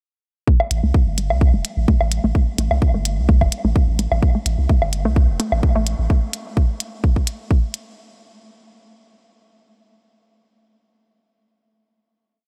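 A lightly reverberant, digital-sounding space holds this short, cool and sparse minimal techno piece in A minor at 128 BPM with a gentle 16th-note swing, where a punchy four-on-the-floor electronic kick runs from 0.5 to 7.6 seconds beneath clicky, tape-tinged closed hi-hats, a low woodblock blipping in cross rhythm through diffuse delay, a deep sine sub bass rolling between E1 and C2 with saturation and sidechain pumping, and a hollow, bouncy square-wave pluck on A3 repeating a 6-step loop that drifts against the bar, colored by chorus, phaser, tape echo and a filter sweep until 5.8 seconds.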